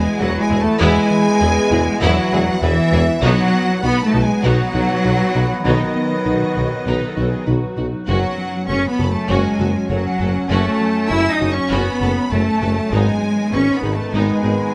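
Bathed in light reverb, this brooding, futuristic hybrid orchestral and electronic film cue at 99 BPM opens with a huge, barely audible impact as lush cellos carry the bass up front over woody double basses and a distant, roomy tuba, while a round, deep analog bass plays a riff, distant bowed violins sing the melody above a vibrato-rich viola accompaniment and a focused second violin line, mellow French horns, vintage trombones and a very quiet, warbling lo-fi tape pad hold sustained chords, and a soft, chorused pluck traces arpeggios through a progression of E, B, F#m and G#m in this short section cut from a longer piece.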